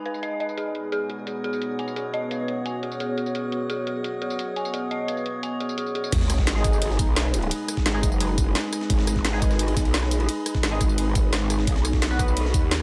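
Set in a light digital ambience, this aggressive, tense excerpt of dark technical drum and bass in G# minor at 173 BPM opens with an eerie, metallic FM drone, a deep, moody sawtooth pad and a detuned synth bell tracing inharmonic arpeggios through phaser and delay, all pumping with sidechain, over a drum and bass kit with a woody snare and bright hats. At 6.1 s the pad and bell drop out as the drop hits: a quiet sub drop, an overdriven knocking kick, a very quiet, gritty breakbeat-style kit with a high-tuned snare, and an up-front growl bass that wobbles through a formant filter. Nasal, band-passed chord stabs with ring modulation and lush chorus join at 6.6 s, while the drone sustains beneath as the harmony moves from G#m to B7.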